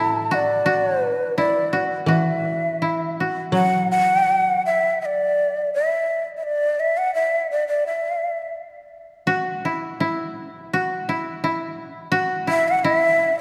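Japanese traditional chamber music, calm and austere, moving at 85 BPM in 2/4 with a free, rubato feel. A breathy, hollow shakuhachi carries the melody up front, its bamboo tone marked by a chiff on each crisp attack, vibrato and lifted highs, playing from the start until 8.5 seconds and returning briefly at 12.5 seconds. Beneath it, one koto plays a second line in a narrow middle register, its fingerpicked, woody sound dry and close, while a second koto supplies a low accompaniment that stops at 5.7 seconds. After a pause, the upper koto comes back at 9.3 seconds and sounds alone until the shakuhachi rejoins. The production is dark and warm, set in a cavernous church reverb with a long tail, and the recording is cut from a longer piece.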